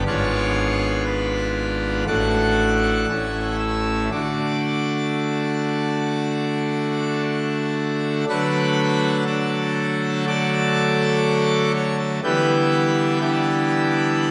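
A solo pipe organ on full organ, with brilliant mixtures, audible chiff and a baroque voicing, sits up front and sounds majestic throughout this reverent, serene classical chorale, spanning G#1 to F#5 and tuned to A4 = 441 Hz. The piece moves at about 59 BPM in 4/4 with uneven, rubato beats in D major, opening on G#dim7 before settling through D/A, A and D, and later reaching Em7/D at 12.2 seconds as the opening section repeats. A reverberant scoring-stage space with a 1.7-second decay surrounds this short passage cut from a longer work.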